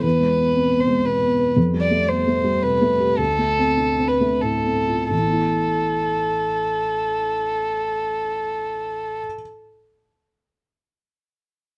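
A dark, woody violin carries the melody, bowed by one player with vibrato and a smooth top, sitting up front from the opening through 9.2 seconds. Beneath it, a felt-muted upright piano supplies the accompaniment, its thick-felt tone soft, mellow and intimate, with a vintage character and a close, present placement. This short neoclassical piece for piano and strings is in A minor and 3/4 time, moving with a rubato feel between 84 and 118 BPM and slowing from 0.8 to 5.1 seconds. The harmony passes through E, Fadd9 and Dm7 before opening onto Asus2 at 5.1 seconds, where a new section begins. Light reverb frames the pair, and the mood is reflective and fragile, cut from a longer work.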